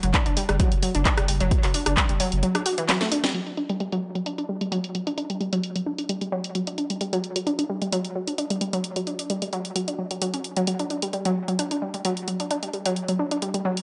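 Dark and hypnotic, this driving peak-time techno cut, taken from a longer piece, moves in a straight 4/4 pulse. Up front, a lush, punchy unison pluck repeats its riff throughout, its detuned sawtooth tone wave-folded and ring-modulated, with a fast, decaying filter pluck, tape echo and sidechain pumping. Underneath at the start, a heavy, layered electronic kick drops out at 2.1 s, and a deep, thick, saturated sub bass, overdriven and low-pass filtered, ends at 2.4 s. The techno drum kit carries on throughout with handclaps, hi-hat, rim click and a cracking snare, its hats and snare softened by low-pass filtering. A drum fill and a band accent lead into the second section, where a filter sweep on the synth begins at 3.3 s. The drums were re-recorded in a large room, and the whole mix sits in a moderate stone-room reverb with a darkened top end.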